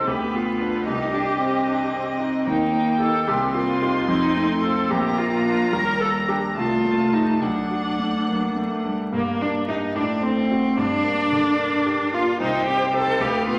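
Stormy and restless, this quick classical-period movement for piano quartet in G minor moves in 6/8 at 74 BPM, counted in dotted quarters, with a freely pushing and pulling rubato and tuning set a touch high at A4 = 444 Hz. A single bowed violin carries the melody from the opening to 13.6 seconds, its tone smooth and even with vibrato, though it sits at a distance in the blend. Sitting close in the mix, a single bowed cello sings a second line with a rich, vibrato-laden voice, while a focused, distant viola and a clear, polished concert grand, up front with deep bass and short sustain, supply the accompaniment throughout. The harmony opens on a diminished chord over D, passes through Cm, Eb, F7, Bb and Ebmaj7 to a D chord, then at 9.1 seconds a new section settles on Gm and closes toward Cm as this fragment of a longer piece breaks off. A wet recital hall reverb with a 1.7-second tail surrounds the ensemble, and a layer of vinyl crackle gives the sound an aged patina.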